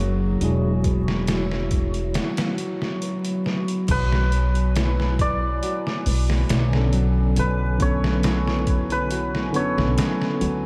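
A warbling, detuned pad, a thumb-plucked concert harp in the background, a woody pizzicato upright bass and a clean tine electric piano with harmonic tremolo and tape echo open this brooding, smoky trip hop excerpt in B dorian at 69 BPM. A gritty, pitched-down sampler-style drum kit with a thumpy kick enters at 0.4 seconds, and the electric piano drops out before a brief break. At 3.9 seconds the harmony moves from Esus2 to Bm9 as a shimmering hammered santur takes the melody, the electric piano returns at 6.7 seconds, and the whole dreamy mix is soaked in cathedral reverb and vinyl crackle.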